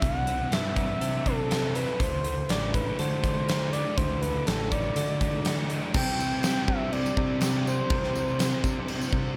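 Light reverb and a small room ambience frame this brief cut from a longer shoegaze and dream pop rock piece, dreamy and blissful at 122 BPM in a straight 4/4. A huge arena drum kit sits up front, with bright cymbals, a fat snare and a punchy kick, while a growling, round electric bass with overdrive holds down the low end. The guitars stack in layers: a dark, thick fuzz guitar with distortion and ensemble chorus carries the riff, a very quiet crunchy overdriven guitar plays its own warm riff, and a clean, direct-recorded, compressed guitar picks quiet, scooped arpeggios. Above them floats a breathy, flute-like synth lead, soft and sustained, with vibrato, chorus and tape echo, singing a melody between A4 and G5 until 8.6 seconds. The harmony moves from Cadd9 to Dadd9 and returns to Cadd9 at 6.0 seconds, and a jingly tambourine joins in the background at 6.2 seconds.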